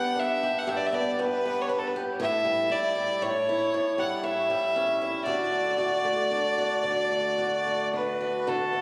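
Nostalgic and wistful, this short Celtic folk passage in D major drifts in a rubato 3/4 at around 54-60 BPM, moving from G through A7sus4 and A7 to settle on D. A rich, nasal fiddle carries the melody with light vibrato and a touch of tape echo, while a dark, woody acoustic guitar with old strings picks a swing-style accompaniment, both sitting up front for the full 8.8 seconds. The sound is boxy and phone-recorded in the room, bathed in a wet church reverb.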